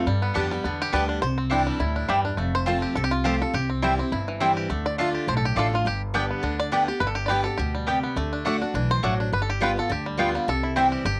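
A twangy, up-front five-string banjo takes a driving, virtuosic solo through this brisk 208 BPM swung bluegrass passage in C major, cut from a longer piece, backed by full-bodied picked dreadnought guitar, thumpy pizzicato upright bass and warm double-strung mandolin stabs entering at 0.3 seconds, with the banjo, guitar and mandolin carrying a cassette-tape tint and the whole home recording sitting in light reverb.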